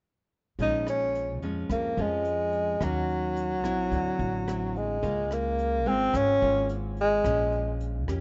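Intimate and smooth, this short bossa nova excerpt in Bb minor at 108 BPM puts a mellow, breathy tenor saxophone up front, playing with vibrato, subtone and scooped notes, over a dark, fingerpicked classical nylon-string guitar, a woody, thumpy pizzicato upright bass and a background brush kit with a boomy kick, hi-hat and rim click, moving through Bbm7, Ebm7, D9 and Db6 in a rough home-demo mix with light studio reverb and dulled highs.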